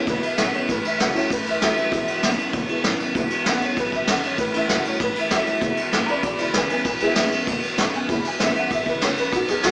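A jangly, detuned honky-tonk upright piano takes the solo throughout this rowdy, upbeat rockabilly excerpt in E major at 194 BPM, moving between E and A chords over a straight 4/4 feel. Up front, a vintage brush drum kit with a punchy kick, dark cymbals and a rolled-off top drives the band, while a growly, thumpy pizzicato upright bass and a twangy, slightly broken-up electric guitar riff sit in the background, alongside a very quiet, full-bodied picked dreadnought acoustic guitar. The band sounds as though it is playing live in one room, with moderate studio reverb and a small-speaker character.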